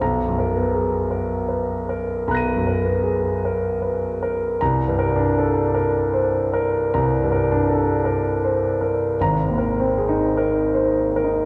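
Dreamy and serene, this impressionist classical excerpt for solo grand piano unfolds in a slow, rubato 4/4 at 52 BPM, its clear, polished, up-front tone spanning Ab1 to D#7 as the harmony drifts from Bmaj7 to Csus2 and settles on Abadd9 at 9.2 seconds, all bathed in a cathedral reverb with a 4.2-second decay.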